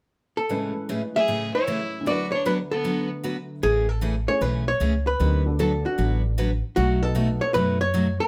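Down-home and cheerful, this short cut from a longer western swing tune moves at 153 BPM in 4/4 with a swung eighth-note feel in A major. A dark, clean hollow-body electric archtop carries the melody up front, picked over a bright, full-bodied dreadnought acoustic guitar and a detuned, jangly vintage upright piano that fill in the accompaniment. A bowed fiddle adds a biting, earthy second line with light vibrato from 1.2 to 3.1 seconds. At 3.6 seconds a pizzicato upright bass enters, woody, warm and thumpy, sitting up front as the harmony turns from Amaj7 and D6 to a B7. A moderate studio reverb gives the group a natural, room-like sense of space.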